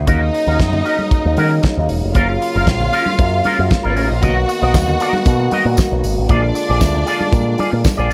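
This joyful, danceable disco excerpt moves in a straight 4/4 over a progression of D#m7, F#maj7, Bmaj7 and A#7 chords. A damped 70s drum kit with a fat snare and tight kick drives it alongside a punchy, up-front picked electric bass run through an envelope filter, which starts the piece alone for an instant before everything joins at 0.1 seconds. An electric guitar, also through an envelope filter and treated with analog chorus, adds twangy, scooped accompaniment. Meanwhile, a lush, clear studio string section carries the second line with vibrato and a slapback echo, while a French horn section holds soft-attack sustained chords. Very quiet congas ring softly throughout, and a jingly, bright tambourine enters in the background at 4.2 seconds, all set in light reverb with small room ambience.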